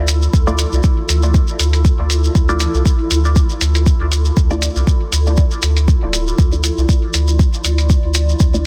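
Nocturnal and hypnotic, this brief excerpt of dub techno at 119 BPM in D minor, swung on the 16ths and resting on a Dmadd9 chord, sets a deep, up-front kick and a round, soft sub bass pumping against the beat beneath a muffled, pitched-down hi-hat, a grainy, close shekere, muted sawtooth chord stabs trailing phaser and dub echo, and a blurred, granular cloud pad with its own reverb, all pressed into a dense, heavily limited, dry mix.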